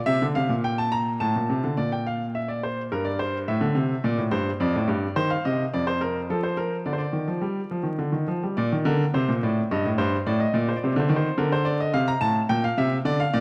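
In a straight 3/4 at 106 BPM, this serious, driving excerpt from a classical, baroque-style two-part invention in Bb major features a solo baby grand piano, clear, natural and up front with long sustain, spanning F2 to Bb5, its opening idea moving into a contrasting passage at 1.8 s and returning at 8.6 s, heard in a moderate scoring-stage reverb with a layer of vinyl crackle.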